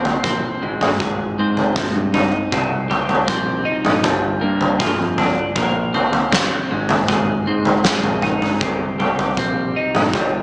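A straight 4/4 pulse at 79 BPM drives this brooding, cathartic quiet-loud alternative rock passage in C minor, where a bright, twangy twelve-string electric guitar picks clean, compressed arpeggios through subtle chorus and analog delay, an oversized low-tuned drum kit hits up front with a punchy kick, medium-tuned snare, toms and a gritty, pumping big-room sound, and a growling fingered bass sits in the background with overdrive, all cycling through Bbsus2, Ab, Cm and Gm7 in a moderate large studio reverb with a small speaker sound.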